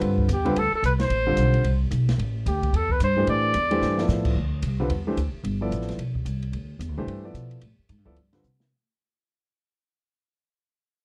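Modal jazz in D dorian at a brisk 221 BPM with a swung 4/4 feel, this short excerpt cut from a longer piece sounds searching and intense, opening on a D9sus4 chord. A clear, present grand piano comps beneath a roomy, distant-sounding trumpet that carries the melody until 4.1 seconds, while woody pizzicato upright bass and a dark, smooth acoustic drum kit with a boomy kick and rolled-off top keep the swing moving, with drum fills at 3.8 and 8.4 seconds. Light reverb frames the dark production, and the whole band fades out from 4.4 seconds to the end.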